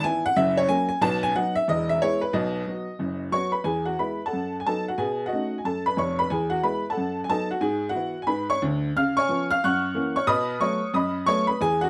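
Stride piano jazz in E major, swinging and playful at a brisk 182 BPM, this brief cut from a longer piece features a solo upright piano with a worn, woody, slightly detuned tone and long sustain, placed up front in a moderate club ambience as it moves from an opening passage into a new section at 3.7 seconds that ends on a run of dominant seventh chords.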